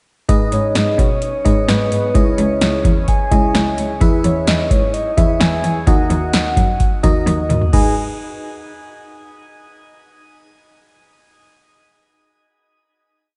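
An up-front electro drum machine drives this short, cool synth-pop piece with a deep kick, punchy snare and metallic hats in a straight beat, closing with a fill at 7.3 seconds. Beneath it a single bowed cello with light vibrato and an airy sul tasto tone pulses in eighth notes as the bass, while a glassy, bell-like FM electric piano pushes close-voiced chords through chorus and shimmer reverb. From 0.5 seconds a soft, octave-layered synth lead with a round sub octave and detuned layers sings a motif-based melody through chorus, phaser, delay and shimmer reverb, and the dreamy, reverb-soaked mix settles onto a final chord at 7.7 seconds.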